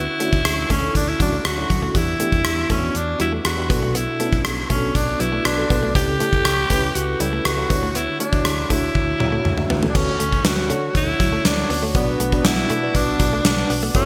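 Bright, polished 1980s-style digital production bathed in a lush hall reverb frames this moody, dramatic pop passage at 120 BPM in a straight 4/4, cut from a longer piece and moving through Dmaj9, Em7 and Bm7 colours. A raspy, gritty alto saxophone carries the melody up front with vibrato, over a warbling FM electric piano with tremolo and phaser, a clean, compressed electric guitar riff drenched in chorus in the background, and a dark, round, foam-muted fingered bass. The gated drum kit with bright cymbals and a tight kick drives a fill from 9.0 to 10.0 seconds, near the end of which a shimmering, retro pulse-width pad enters at 9.9 seconds with soft sustained chords, just as the music shifts into a new section at 10.0 seconds.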